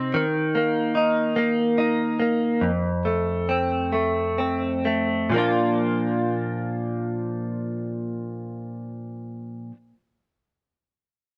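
Swaying and romantic, this pop fragment in Bb major moves in a slow 6/8 at roughly 41-50 BPM counted in dotted quarters, with the tempo easing down from the opening until 5.3 s. A bright, clean electric guitar, recorded direct, picked and compressed, sits up front across its range from F2 to F4. It is double-tracked with a slapback echo, and the whole is dressed in light reverb and an open, roomless sound. The harmony moves from Eb5 to F and settles on Bb as a new section begins at 5.3 s.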